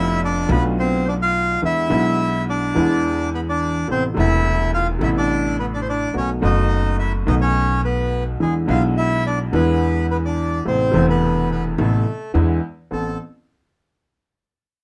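Sultry and passionate, this rubato tango in A harmonic minor at 106 BPM, tuned to A4 = 435 Hz, sets a reedy, airy bandoneon melody up front over a clear upright piano accompaniment and a woody pizzicato upright bass in light reverb, moving through a Bm7b5, E7 and Amadd9 progression before a brief new section opens at 12.9 seconds.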